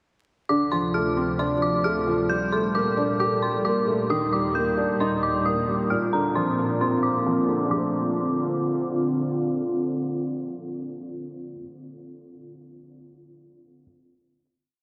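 A dark, detuned synth bell, a felt-muted upright piano and an airy, breathy pad open together, setting a menacing, hard-hitting hip hop and trap mood in a half-time feel as a filter sweep runs through the breakdown. The eerie, inharmonic FM bell repeats a looping melody with chorus, tremolo and analog delay, while the intimate piano loops a rising and falling eighth-note arpeggio with audible action noise, and the full-bodied pad holds chords through ring modulation and a noise layer. The dreamy mix is soaked in huge reverb, vinyl crackle and a low-pass filter; the bell stops at 9.0 s and the pad at 11.6 s, leaving the piano to ring on until 13.8 s.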